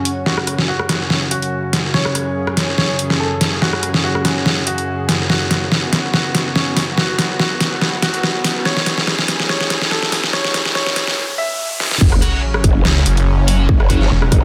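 Aggressive and chaotic, this heavy wobble dubstep passage at 143 BPM in a swung half-time 4/4 opens with a clear concert grand piano melody and a lush detuned supersaw pad, both under a filter sweep, over an up-front dubstep kit with a deep snare, building with a faint riser and sub drop from 6.9 seconds before the drop at 12.0 seconds unleashes a growling, wobbling bass, a punchy layered kick, scooped high-gain guitar stabs and a snarling distorted saw bass in a dense, heavily limited mix.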